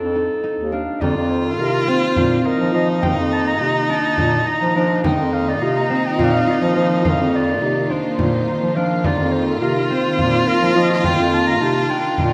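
A dark production sits in a wet scoring-stage reverb, giving this hopeful, shimmering excerpt of contemporary chamber music a spacious glow. It moves in 7/8 at 209 BPM counted in eighths, with a straight feel, in F mixolydian over an F7 chord that shifts to F7sus4. A mellow clarinet carries the melody in a vintage classical style. A clear viola plays a bowed second line with intense vibrato and a smooth top, and a concert harp rings out fingerpicked arpeggios. Up front, a warm bass clarinet holds the bass. At 1.0 s a rich, lush studio string section joins in the background with sustained bowed chords, alongside a frame drum struck with hard hands in a small room, and the ensemble carries on to the cut at 12.3 s.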